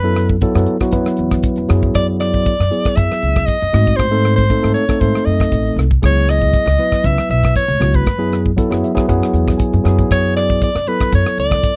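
Slick and nocturnal, this short cut from a longer electric jazz fusion piece moves at 118 BPM in a straight 4/4, with an edgy, forceful soprano saxophone carrying the vibrato-laden melody up front through a slapback echo, a bright, clean tine electric piano comping over chords like F#m7, G#7b9 and C#m11 before a fill at 8.6 seconds, a woody pizzicato upright bass, and a damped 1970s drum kit of hi-hat, tight kick and rim click, all captured in a dry, close studio sound.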